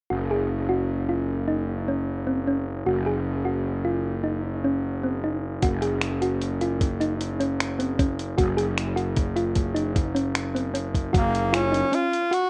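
A progressive instrumental piece in 7/4 at 152 BPM, this short cut from a longer work feels intricate and bright, centered on Gb lydian. A round, tine-like synth pluck with a thumb-piano character plays arpeggios from the start, its vintage FM tone carrying a warbling chorus and tape echo, while a growly, fuzz-drenched picked electric bass holds low on Gb1 up front. At 5.6 seconds a dusty, sampler-style drum kit joins with finger snaps, hi-hat and a thumpy kick, its compressed, gritty sound placed close to the listener. Near the end, at 11.2 seconds, a bright tenor saxophone steps forward with a classically styled solo melody sung with vibrato, as the harmony settles on Gbmaj7. The mix is dry and rough, with the loose, intimate feel of a home demo.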